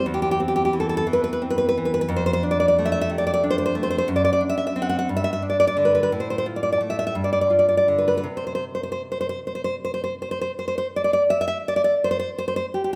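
A solo nylon-string classical guitar opens the excerpt, fingerpicked up front with a bright, full-bodied tone from fresh strings and an audible finger squeak, in a passionate, wistful romantic piece in C major. The tempo is slow and rubato at 52-60 BPM in 6/8, with the harmony moving through C/E, Dm7/F and D7/F# before settling between G and F/A and arriving at a bare moment at 8.3 seconds. A lush recital hall reverb surrounds the guitar as its opening phrase returns at 10.5 seconds, and the passage breaks off as part of a longer work.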